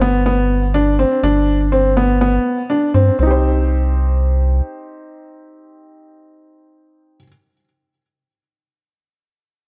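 This piano and strings electronica cut in C minor moves at 123 BPM in a straight 4/4, cinematic and melancholic, opening on a drop over a G chord before settling onto C minor at 3.2 seconds. An intimate, woody upright piano plays a riff with delay and audible action noise throughout, while a round, deep, nasal analog bass sits up front beneath it until 4.6 seconds. Light reverb and a small room ambience give the sound a natural closeness.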